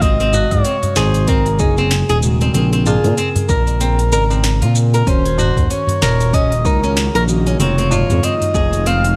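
Organic downtempo with an earthy, warm mood and a lightly swung 4/4 groove, heard as a short section cut from a longer piece. A breathy, flute-like synth lead carries the melody with soft, sustained notes touched by vibrato, chorus and delay. Beneath it, muted felt-like synth keys sit dark and intimate in the background, pumping gently with the sidechain. A bright, fingerpicked flamenco guitar adds arpeggios with echoing delay. An up-front, smooth synth bass glides between notes, while a produced afro-pop kit with a sharp snare, crisp hats, shaker and toms joins a deep, tape-tinged electronic kick, and a high-tuned, very quiet tabla enters at 0.3 seconds. The harmony moves through Ab7, Bbmadd9, Ebm7 and Fm7, and at 6.0 seconds a tense, string-like bowed drone fades in underneath, holding sustained chords over the final Ebm7 and Fm7.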